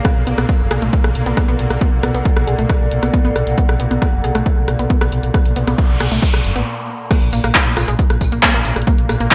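A straight 4/4 pulse at 136 BPM drives this hypnotic, industrial peak-time techno cut in B minor, led by an overdriven, punchy electronic kick up front and an analog drum machine of crash, handclaps, hi-hat, rim click and tambourine with gated reverb. A growling, thick FM bass and a round, detuned analog pluck riff with chorus and digital delay pump against the kick, while a swarming, granular drone and a warbling, lo-fi tape-like pad with chorus shimmer behind them. An electronic noise sweep enters at 5.5 s, the pad falls away at 6.7 s for a brief stop, and the drop lands at 7.1 s in a bright 1980s-style digital production with light reverb.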